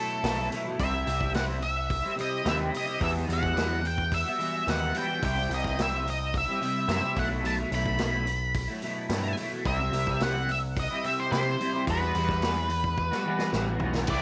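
An octave-fuzz lead guitar, dark and distorted with tape echo, carries the melody over a twangy, slightly broken-up rhythm guitar riff run through a rotary speaker and double-tracked, a growling overdriven picked bass, and a vintage drum kit with a punchy kick and dark cymbals, setting a trippy, mysterious psychedelic rock mood in light studio reverb, with a drum fill at 13.0 seconds closing this section of a longer piece.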